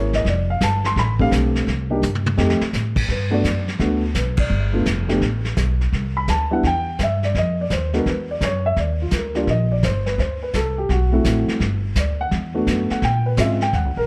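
Jazz piano trio in a swinging, sophisticated vein, cut from a longer piece, with a mellow, natural-sounding baby grand carrying the melody up front over a woody, thumpy pizzicato upright bass. A vintage brush drum kit sits a little further back with dark cymbals, a punchy kick and a rolled-off top, slipping in a fill at 2.0 seconds before the band hits an accent at 4.3 seconds. The harmony moves through rich chords such as Gmaj9, Ebmaj7 and D7, all set in light reverb and a warm production.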